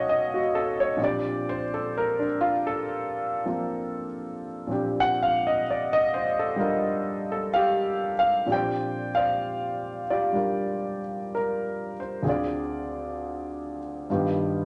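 A warm concert grand piano plays alone in this intimate, romantic jazz ballad fragment, with a swing feel, deep bass reaching up into the upper middle register, audible action noise, and a natural, up-front sound in a moderate studio room with a rolled-off top, its harmony moving to a half-diminished chord at 12.2 seconds.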